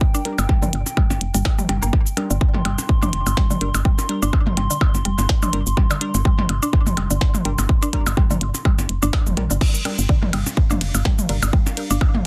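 A punchy, layered electronic kick sits up front through this short cut of cool, hypnotic minimal techno in 4/4 with a light swing, joined by a round, woody FM bass that pumps against it. A mallet-like FM pluck with chorus and digital delay carries the riff, while a tiny-snared click kit with clicky hats, shaker, ride and crash, plus delayed electronic blips and toms, fills out the groove. Crisp, warbling wavetable chord stabs add harmony, while a dark, nostalgic lo-fi pad with a slow attack and built-in reverb drifts in the background.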